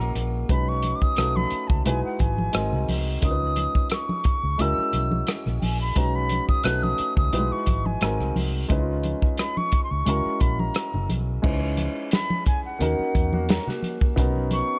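Smooth and romantic, this short excerpt from a longer piece is lush 1970s-style soul in B major at 88 BPM, with a gentle 16th-note swing. A reedy, airy concert flute carries the melody in a straight tone, floating over an intimate grand piano whose action noise can be heard beneath its accompaniment. A dark, round, foam-muted electric bass gives a punchy low end, while the up-front drum kit brings a fat snare, punchy kick, dark cymbals and a rolled-off top from a tight booth with a pumping room sound. Damped congas with soft hands sit close and dry in the background from 0.5 seconds, and a clean, fingered electric guitar appears only briefly, at the very start and again from 13.3 to 14.2 seconds. The harmony cycles through B6, B7, Emaj7, G#7, C#7 and F#7 before moving at 11.4 seconds to C#m9 and D#m7, settling on Bmaj9, all bathed in studio reverb.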